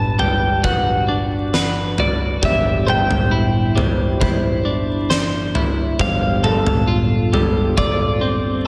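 A huge arena drum kit with a fat snare and punchy kick sits up front from 0.2 to 8.0 seconds in this soaring, euphoric post-rock fragment at 67 BPM. Around it play a clean electric guitar melody coloured by analog chorus and slapback echo, compressed twelve-string electric guitar arpeggios shimmering with tremolo, soft felt-muted upright piano arpeggios in the background, and a growling, round overdriven picked bass holding G1, as the chords move from Gmaj7 to Cadd9/G to Fadd9/G inside a lush hall reverb that gives a big arena sound.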